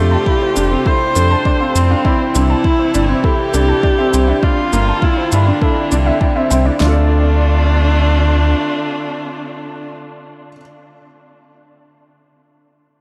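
A close, dark viola carries the melody up front with vibrato and portamento, its tape echo drifting through a dreamy, cathedral-like reverb in this intimate, hypnotic piano and strings electronica cut from a longer piece, moving at 101 BPM in D minor. A felt-muted upright piano plays a soft, mellow riff while a bowed string quartet holds sustained chords and a warbling, lo-fi pluck spins chorused arpeggios in the background, the strings and pluck pumping with sidechain alongside a round, deep analog bass. A deep house kit with a deep kick and fat snare sits up front from 0.3 seconds until about 6.9 seconds, joined by a tape-warm shaker from 0.6 to 6.6 seconds, and as the chords settle on Dm7 the drums stop.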